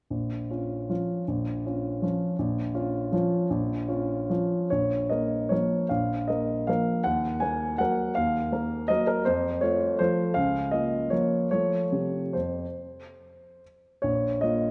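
A solo baby grand piano, natural and up front in a moderate concert hall reverb, plays an elegant, wistful classical waltz in 3/4 with a rubato feel, moving from Bb minor through Eb minor and F before settling back on Bb minor at 14.0 seconds in this short cut from a longer piece.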